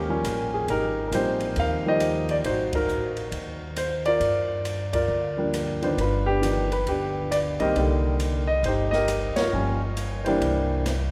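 An up-front grand piano with a short sustain carries the melody in this moody, smoky jazz piano trio fragment, swinging at 136 BPM in 4/4 over chords moving from Eb9 and Abmaj13 through Gm7 and Cm7 to C7. A woody pizzicato upright bass holds the low end, and an acoustic drum kit with dark cymbals, a medium-tuned snare and a boomy kick comes in at 0.2 seconds, lower in the mix, playing hi-hat, ride, rim click, snare and kick. The trio hits band accents at 2.7 and 9.3 seconds, all set in the long, wet bloom of a cathedral-like hall.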